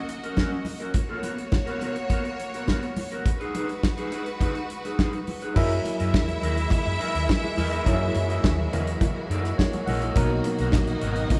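Glamorous and celebratory, this disco piece opens with a lush, bowed string section carrying a second line beside a dark, picked electric guitar at the edge of break-up through spring reverb, all driven by a dry, damped 70s drum kit up front and thin-skinned congas played with hard hands in the background. Just before 5.6 seconds a barky, lightly overdriven tine electric piano joins; at that mark a second, smooth-topped string section adds sustained chords and a round, punchy hollow-body bass enters, with the electric piano taking a fill at 9.3 seconds. The band plays together in one large studio room with moderate reverb.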